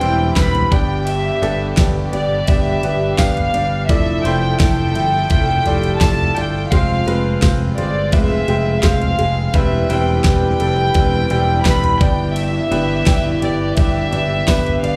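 An excerpt of hopeful, anthemic piano-driven pop at 85 BPM opens with a soft-attack violin section carrying a pure, floating melody over brilliant, woody upright piano and a French horn section with light vibrato in the background, both lines touched by slapback echo, while a lush, very quiet string section sustains chords and a dark, round overdriven picked bass joins a layered pop drum kit, up front with a knocking kick and fat snare, a jingly tambourine enters at 0.4 seconds, and the harmony moves through Cmaj7/E, G, Dmadd9/F and Fm, all heard as a live gig through a club PA with light reverb.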